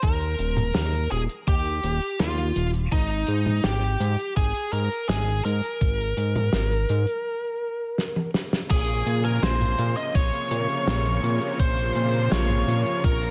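A steady, straight 4/4 pulse at 83 BPM sets a driving, cinematic synthwave mood in Bb dorian, carried by a thumpy, sampler-style electronic kick with a large-room character and a dark-cymballed acoustic soul kit with a fat snare, hi-hat, shaker, toms and crash, the kit bathed in gated reverb. Underneath, a fat, detuned analog bass blends sawtooth, square and triangle tones with touches of ring modulation and a filter sweep, sitting up front with a sidechain pump. A biting, overdriven electric lead guitar carries the melody through a digital delay, bright and prominent over the shift from Eb to Absus2. A break arrives at 7.3 seconds, with a drum fill from 8.0 seconds leading into a new section. At 8.7 seconds, on a Bbmadd9 chord, a smooth, unison supersaw enters with soft sustained chords that also pump, while a shimmering, warbling vintage string machine of violins floats high in the background, coloured by ensemble chorus, cassette tape grit and delay. 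A light, small-room ambience holds the whole piece together before it cuts off.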